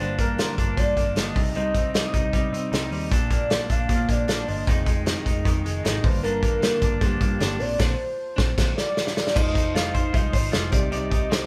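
A warm, velvety synth lead leads this jangly indie pop piece in C minor, its smooth sawtooth-and-triangle tone thickened by unison, wave folding, chorus and vibrato as it carries the melody over a bittersweet, wistful progression that begins on Gm7. Beneath it, from the very start, a slightly broken-up electric guitar plays compressed, picked accompaniment, while a bright, twangy, direct-recorded clean guitar picks arpeggios bathed in spring reverb, and a dark, round, foam-muted bass sits in the background. A loose acoustic drum kit joins at 0.2 seconds, up front and mid-forward with dark cymbals, a medium-tuned snare and a tight kick, holding a straight 154 BPM in 4/4. From 7.8 seconds a drum fill and a band accent lead into a new section at 9.4 seconds, where a metallic, ringing vibraphone with medium mallets and slow motor vibrato adds a second line in the background over Fm7 and Cmadd9. 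The band sounds as if it is playing live in one room, with a short, wet studio reverb gluing the parts together.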